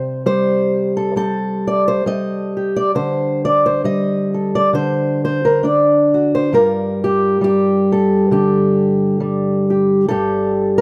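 A dark, intimate production with light reverb frames this brief folk piece cut from a longer work, a solo fingerpicked acoustic guitar in G minor at a slow 67 BPM in 4/4 with a gentle swing. The old ladder-braced guitar sits up front, its woody, boxy voice colored by old strings as it ranges from G2 to Eb5. Its melancholic progression moves from C5 through Dsus4 and D to Gm7, settling on Gsus2 at 10.1 seconds.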